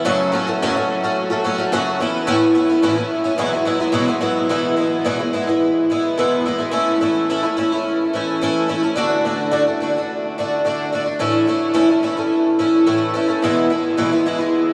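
A picked twelve-string acoustic guitar opens the recording alone, its octave-doubled strings shimmering through an analog chorus and a diffuse ambient delay. This is a hopeful rock excerpt in A major at 108 BPM in a straight 4/4, with the guitar sitting up front in a boxy, warm tone that spans E2 to F#4. A huge ambient reverb with a 9.1-second tail soaks the mix, giving the studio ambience a dreamy quality. The chords move from F#m through Aadd9 and Eadd9 in the opening few seconds, then shift at 4.5 seconds into a second section of E, A/E, D, A and back to E. The guitar plays through to 14.7 seconds, where this fragment of a longer piece breaks off.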